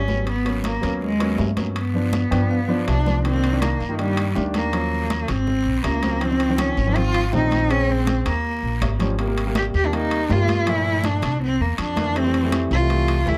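A rich, bowed cello carries the melody up front, its focused tone shaded with vibrato, in this sultry, driving Afro-Cuban jazz cut from a longer piece. The music moves at 162 BPM in a straight 4/4 and settles into C minor at 3.2 s, after an opening passage over G#m11 and G7 chords. Beneath the cello, a woody, thumpy pizzicato upright bass on gut strings also sits up front, while a warm grand piano supplies accompaniment and plays a fill from 2.1 s leading into that arrival. The percussion features ringing, medium-tuned congas and a raspy guiro tucked in the background, with metal-shell timbales heard in a live room. The harmony then moves through seventh chords such as Ebm7, Ab7 and Dbmaj7 before closing on Gm7, C7 and Fmaj7, all captured by close, detailed microphones with little reverb.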